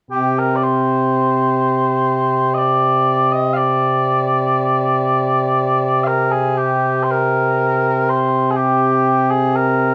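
Close, detailed microphones and a light reverb give this short Celtic folk recording an intimate, clear sound. A set of small bagpipes plays alone and up front from 0.1 seconds, with a mellow, sweet tone that flows in one continuous line. The tempo sits around 61 BPM in 3/4, but the rubato feel lets the phrasing breathe freely. Touches of vibrato color the notes as the melody moves between C3 and F5, and a new section begins at 6.6 seconds before the piece is cut off at 9.9 seconds. The mood is mournful and haunting, like a fragment from a longer lament.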